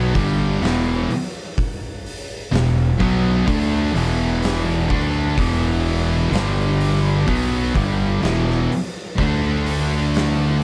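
A slow, straight 4/4 at 63 BPM carries this brooding, hypnotic stoner and doom metal passage in E minor, moving from Em to G5, back to Em and then D5. A bright, double-tracked high-gain guitar plays the riff while two thick fuzz guitars, one dark and one warm, sit in the background, all over a growly, overdriven fingered bass. An oversized, low-tuned acoustic drum kit with a boomy kick, fat snare and hi-hat plays from 0.2 to 10.4 seconds, gritty and saturated in a pumping stone room, all inside a dark, warm-toned small-room production cut from a longer piece.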